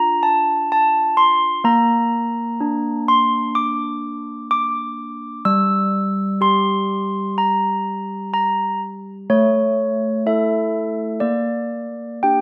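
A slow, straight 4/4 pulse at 63 BPM sets an unhurried pace for this short classical tune for handbells, an excerpt taken from a longer piece. The handbells play alone for the full 12.4 seconds, spanning G3 to E6 with medium clappers and a dark yet clear, ringing tone that sits up front. The harmony opens on Dm, moves to Bb at 1.6 seconds, drops away to unaccompanied melody at 5.4 seconds, then returns with A at 9.3 seconds before settling on Gm/Bb. Close, detailed microphones catch the smooth tone of each bell, while a moderate recital hall reverb lets the notes hang in the air. The mood is wintry and solemn.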